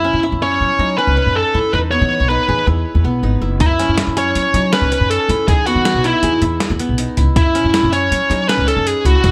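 A distorted, high-gain lead guitar carries the melody up front, its picked tone thickened by delay, in this intricate, tense progressive instrumental excerpt in 5/4 with a straight feel. Beneath it, a bright-edged, plectrum-plucked qanun spins arpeggios while a woody, dark pizzicato upright bass on gut strings anchors the harmony as it moves between F#m7, Emaj7 and F#7(no3). At 3.6 seconds a gritty, pitched-down boom bap sampler-style kit joins with hi-hat, a thumpy kick and a medium-tuned snare, all set in a light reverb.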